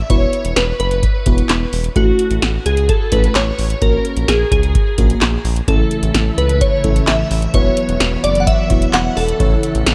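A shimmering, detuned FM bell melody with a halo of ensemble chorus, digital delay and shimmer reverb opens this nocturnal, driving synth-pop excerpt at 129 BPM in 4/4, tuned to A4 = 437 Hz, over a round, deep analog bass and a dry, punchy electro drum machine with handclaps and metallic hats, while a lush FM electric piano with a soft pad layer moves through Esus2, A and F#/A# before a vintage, warbling organ-string ensemble enters at 5.7 seconds with mellow sustained chords under a light reverb.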